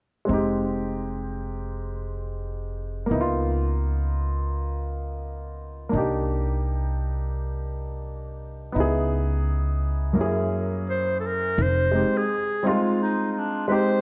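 A clear, jazz-style clarinet takes the solo melody late in this short cut from a longer piece, entering at 10.9 seconds with light vibrato and sitting up front in the mix. This is smoky, mellow jazz-hop at 85 BPM in 4/4, with a swung sixteenth-note feel and tuning just above standard pitch at A4 = 441 Hz. From the start, a dark concert grand piano provides the accompaniment, its tone mellow with deep bass. Beside it, a pizzicato upright bass with steel strings sounds woody, growly and thumpy, and it drops out at 12.0 seconds. The harmony moves through Fm7, Db13, Cm7, Dbm7 and Gb9 before returning to Fm7 as a new section begins. Light reverb and the worn, warbling character of old cassette tape, with its pitch drift, color the whole recording.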